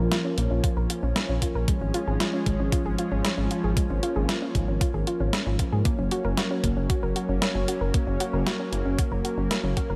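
Nocturnal and moody, this synthwave excerpt moves at 115 BPM in a straight 4/4, with a lush, warbling unison pad holding sustained chords under sidechain pumping and chorus as a soft, round pluck traces arpeggios through chorus and digital delay. A dark, rumbling detuned saw bass with tube saturation sits up front, while a clean 12-bit drum machine supplies hi-hat and a medium-tuned snare, joined at 0.6 seconds by a thumpy electronic kick, both carrying a small-room character. Light reverb frames the progression as it moves from Bbm to Db/Ab and settles on Gb at 5.9 seconds.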